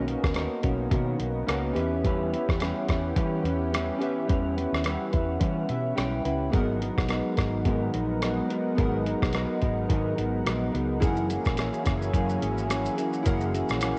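A sunny, dreamy bedroom-pop excerpt at 107 BPM opens with a dark, slightly broken-up electric guitar through a small old amp, placed up front with analog chorus, warbly pitch drift and cassette tape, over round analog keys and a lush, detuned unison pad in the background, moving from Bmaj9 through Em6 and G#m9 to F#9. A foam-muted fingered electric bass and a compressed, sampler-style drum kit with a thumpy kick, rim click, hi-hat and shaker, re-recorded in a small room, carry a lightly swung 16th-note feel, and the keys add a fill from 5.4 seconds. The home cassette recording has light reverb and digital ambience, with nothing above 10.4 kHz.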